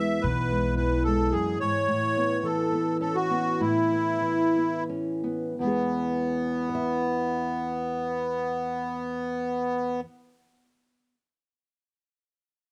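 A reedy, sweet accordion with a light tremolo tuning carries the melody up front in this pastoral folk waltz in E major, its dark, smooth tone giving the tune a gentle, homely glow. Beside it, a small-sounding, fingerpicked nylon-string guitar provides close, up-front accompaniment across a broad range, its acoustic tone shadowed and intimate. At the very opening, an upright bass briefly plucks a woody, pizzicato low B on steel strings, deep and dusky in colour. The tempo sits between 81 and 109 BPM in a straight 3/4 and eases down from 1.9 to 5.6 seconds as the harmony moves from E to Aadd9, then settles back on E when a new section begins. After the accordion finishes, the guitar plays alone until 11.2 seconds in this fragment cut from a longer piece, with the dry, detailed recording keeping every instrument near and clear.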